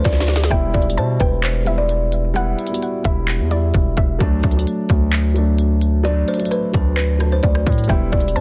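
Opening on a quick drum fill from the up-front trap kit with its hard-clipped kick, sharp snare, crisp hats, claps and rim clicks, this melancholic, hard-hitting half-time trap excerpt in E minor at 130 BPM rides a heavy, saturated 808-style bass, a dark, boxy grand piano with audible action noise, a woody, filtered kalimba melody with delay that returns at 6.0 seconds, and a soft, round pluck with chorus and delay sitting in the background over D and Em chords in a dense, heavily limited digital ambience.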